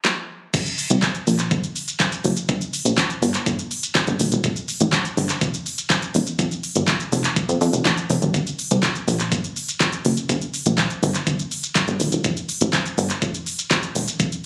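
A layered electronic pop drum kit opens this confident, bittersweet dance-pop cut, with a knocking kick, fat snare, crisp hats, handclaps, shaker and crash cymbal sitting up front. At 0.5 seconds the drop arrives with a plucky analog bass, punchy and funky with a fast-attack filter pluck and a mellow, wave-folded sawtooth-and-square tone that pumps with sidechain compression. Captured on a phone in the room, the sound carries a club's reverb.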